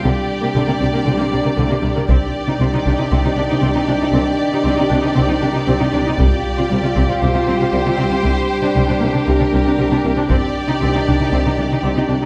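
Heavy-stick taiko hits land in a small room at 2.1, 6.2 and 10.3 seconds, driving a dark, relentless build-up in this epic orchestral film-score fragment in 4/4 with a straight feel. Above them, a clear, distant violin section carries an intense, vibrato-rich melody, while a focused second violin line and bowed double basses join smooth, lush violas, a warm cello section and a roomy, distant French horn section holding sustained chords in the background. The harmony moves through Gm/C, Cmadd9 and Fsus2/C, all set in a moderate scoring-stage reverb.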